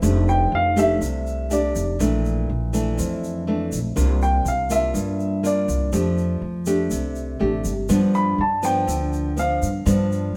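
A straight 4/4 bossa nova groove sets a relaxed, sophisticated mood in this short section cut from a longer piece. A grainy, bright tube shaker sits low behind a dark, full-bodied fingerpicked nylon-string guitar and a woody, thumpy pizzicato upright bass, as the chords move from F69 through Bbmaj7#11 and C9sus4, return to F69, and then arrive on G7. A polished, present baby grand piano enters at 0.3 seconds and carries the high melody up front, with the whole band playing together live in one room under light reverb.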